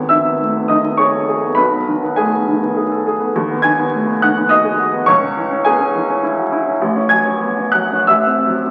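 Romantic classical character piece for solo upright piano, warm and lyrical in a rubato 3/4, its woody, polished tone sitting up front in a wet recital hall reverb beneath the crackle of a very old 78 rpm record, moving from G#m through C#m to a closing F#m7b5/A before this 8.7-second excerpt breaks off mid-piece.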